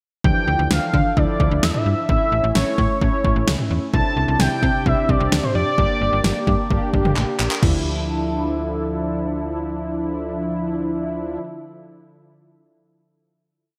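A bold, retro octave-doubled lead sits up front in this driving, melancholic synth-pop piece, carrying a motif-based melody in sentence-like phrases with chorus, delay and vibrato until it stops at 7.1 seconds. Beneath it, mellow synth brass with a round, detuned sawtooth tone pushes close-voiced chords. A phased analog pad swirls in the background with a nasal, evolving sustain. A snappy, metallic FM bass is sequenced at 130 BPM in 4/4, while a deep house drum kit with a deep kick, fat snare, syncopated toms, handclaps and gated reverb drives the verse, ending with a fill at 7.2 seconds. The harmony in D minor moves through Dmadd9, A, Cadd9 and Gm before settling on a held Dmadd9 from 7.6 seconds, all in a bright 1980s-style digital production with a moderate plate reverb.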